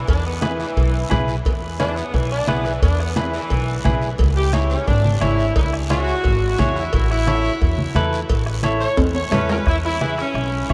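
Bathed in a huge ambient reverb that places it in a vast, echoing space, this sunny, danceable cumbia fragment moves at 175 BPM in E major, passing through E, C#m and A before returning to E at 9.7 seconds. A tight, edgy saxophone section with light vibrato carries the melody in a present jazz style, over woody pizzicato upright bass and a dark, scooped clean electric guitar playing fingered accompaniment. In the background sit a soft-beater bombo, thick-skinned low-tuned congas, and ringing cowbell and timbales that drop out at 9.6 seconds, joined by a raspy, close guiro, with a drum fill leading into the final chord.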